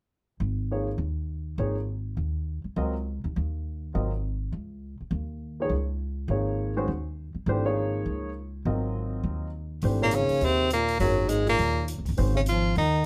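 Modal jazz at a brisk 204 BPM in 4/4 with a swung eighth-note feel, this short cut from a longer piece carries a spiritual yet cool mood, tuned slightly low to A4 = 435 Hz. A woody, pizzicato upright bass with steel strings sits up front from the opening, joined almost at once by an intimate concert grand piano whose action noise and deep bass lend it a natural, close character as it holds a suspended G#13sus4 harmony. At 9.8 seconds the music shifts to a new section on G#sus4, and an open jazz drum kit from a studio room slips in with hi-hat and a boomy kick, sitting low in the mix. At 10.0 seconds a bright, punchy tenor saxophone takes the melody with forceful, present vibrato, while a mellow, breathy, close-miked bass clarinet with its own vibrato plays a second line a register lower. A moderate club reverb gives the ensemble a modest sense of space.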